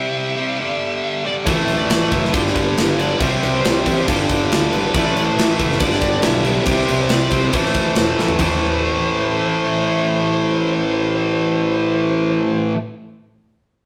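A tight, up-front distorted guitar riff drives this heavy, menacing hard rock excerpt, joining at 1.5 seconds alongside a fuzzy, overdriven bass and a tight acoustic metal kit with bright cymbals, a tight kick and toms. From the opening, a high-gain rhythm guitar and a bright, distorted lead melody sit further back, the lead riding over power chords built around C, G and A. The drums mark the move into a new section with a fill at 8.2 seconds before dropping out, and a rough rehearsal-room sound with tube saturation and stony reverb gives the whole a raw, live edge.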